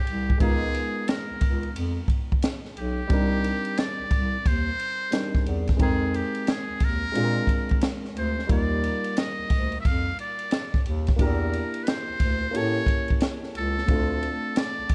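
Mellow and nocturnal, this swung jazz-hop excerpt at 89 BPM sets a buzzy, thin muted trumpet melody with vibrato over woody upright piano chords moving from C#13 through Cm9 to Dm7, a dark bass clarinet line with its own vibrato, and an up-front acoustic jazz kit whose boomy kick, high-tuned snare, hi-hat and ride carry vintage 12-bit sampler grit, all inside a small, dark, warm room sound.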